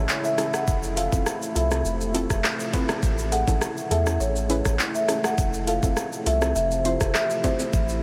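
A deep, moody pad and a punchy sine sub bass open this bouncy, summery dancehall excerpt at 102 BPM in a straight 4/4. The detuned, wave-folded pad holds sustained chords with a slow attack, chorus, built-in reverb and sidechain pumping, while the bass brings a pitch-drop attack and a mellow, sustained tone. From 0.1 seconds an electronic island pop drum kit sits up front, overdriven and re-recorded in a small room, with a knocking kick, metallic hats, handclaps, rim clicks and shaker; a ringing, acoustic tube shaker and timbales, played with soft hands, sit close but in the background. A marimba with medium mallets carries the mid-forward melody through tape echo from 0.2 seconds, and a soft, round pluck with a dark, decaying filter and chorus adds background accompaniment. The harmony alternates between Amaj7 and Fmaj7, and the whole mix is soaked in a huge ambient reverb for a dreamy finish.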